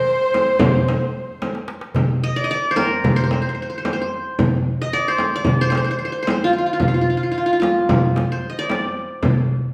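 Turkish makam ensemble music in C makam ussak, this soulful, hypnotic passage cut from a longer piece moves at 222 BPM in eighths through a straight 9/8. The qanun carries the melody throughout, its fingerpicked triple strings sounding bright-edged and up front. At the opening, a dark, intimate kamancheh and a close chamber violin section, bowed sul tasto with a smooth top, hold a brief second line on C5 before stopping at 1.4 seconds. A metal-shell darbuka, crisp and dry under hard hands, enters first and is soon joined by a vintage, band-limited frame drum, and a drum fill from 1.4 to 2.0 seconds leads into the next section. The band plays live in one room, bathed in a wet large studio reverb.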